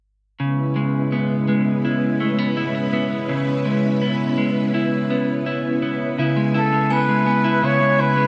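A hazy, echo-heavy wash of springy reverb opens this haunting dream pop fragment at 83 BPM in C# minor, where a lush, sawtooth string machine with ensemble chorus holds a C#m7 chord beneath clean, picked electric guitar arpeggios up front, a clear flugelhorn with vibrato enters with a tape-echoed melody at 6.6 seconds, and a faint, inharmonic synth chime with tremolo warbles in the background from 6.9 seconds.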